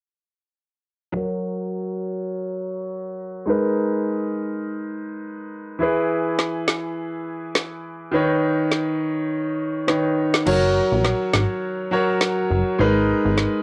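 Sultry and bouncy, this dancehall excerpt moves at 103 BPM in 4/4 with a gentle 16th-note swing. A bright concert grand piano opens alone at 1.1 seconds, playing up-front accompaniment with a brilliant, open tone, deep low end and long sustain. It is colored by a low-pass filter with a filter sweep and a cassette-tape character, over chords moving from F# through G#madd9 and E to Badd9/D#. An electronic, produced afro-pop drum kit arrives at 6.4 seconds, its woody snare sitting up front alongside rim clicks and crash cymbal. At 10.5 seconds, a new section begins with the return of F# and G#madd9, and a plucky analog bass enters with a punchy, funky, wave-folded sawtooth-and-square sound that has a fast attack and a decaying tail. Light reverb and a home cassette recording quality give the whole piece an intimate, lo-fi feel.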